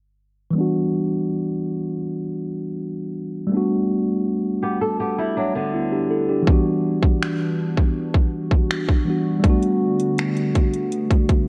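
The recording has the worn, warbling sound of old cassette tape, with drifting pitch, a faint mains hum and light reverb. Out of this comes a moody, late-night piece of contemporary R&B in E minor at 81 BPM in a straight 4/4. It is cut from a longer piece. A mellow tine electric piano enters up front at 0.5 s, warm and clean as if heard through built-in speakers, and plays the chords Em9 and Gmaj9 under a filter sweep that lasts to the end. At 4.6 s a warm, fingerpicked flamenco guitar plays brief arpeggios with audible finger squeak, softened by a low-pass filter and trailing tape echo. From 6.5 s an electronic trap kit adds finger snaps, metallic hi-hats and a hard-clipped kick, while a hollow, flute-like pad with a slow attack and chorus holds soft sustained chords underneath.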